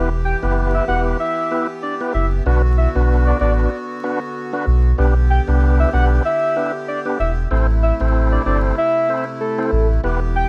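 A deep, up-front sub bass doubled at the octave anchors this sultry, hypnotic dancehall excerpt, beneath a fat, lightly overdriven tonewheel organ spun through a fast rotary speaker, reedy, close-miked accordion chords with slow beating, and a soft, round, octave-layered synth lead carrying the melody with chorus, vibrato and analog delay, over a bed of vinyl crackle.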